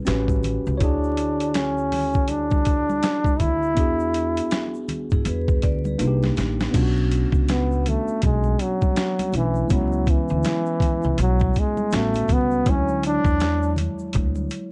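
A swung sixteenth-note boom bap groove anchors this mellow, nocturnal jazz-hop excerpt: a gritty, compressed, pitched-down sampler-style kit with a thumpy kick and medium-tuned snare sits up front, joined by a woody pizzicato upright bass on gut strings, while egg shaker and hard-hand congas murmur in the background. A clean tine electric piano played through a combo amp lays down lush extended jazz chords, and a warm trombone carries the melody with a soft attack, scooped notes, light vibrato and a smooth top, stepping into an up-front solo at 6.7 seconds after a drum fill at 6.0 seconds. A metallic, ringing vibraphone with soft mallets and slow motor vibrato appears briefly at 5.1 seconds, all within a dark, nearly dry production dusted with vinyl crackle.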